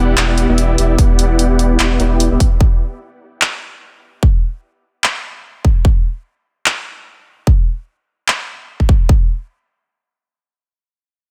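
A huge, detuned supersaw riff with sidechain pumping, a low-pass filter sweep and delay rides a thick, saturated sub bass that also pumps and sweeps over an Em9 chord until 2.4 seconds, while a layered big-room kit of handclaps and hi-hat and a punchy electronic kick entering at 1.0 seconds carry this lush, bittersweet, half-time future bass excerpt onward in dry, up-front sound.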